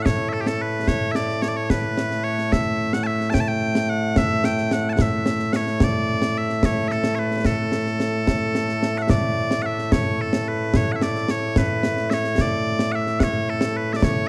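A dark production with light reverb frames this stirring, ceremonial piece of Scottish traditional pipe music in A major, moving at 73 BPM in a straight 6/8 and cut from a longer performance. Piercing, continuous bagpipes carry the melody up front from A2 to A5, sounding out from the very start. Close, dry acoustic concert snare and bass drum with gleaming cymbals join at 0.1 seconds as the same strain plays twice, the repeat arriving at 9.1 seconds.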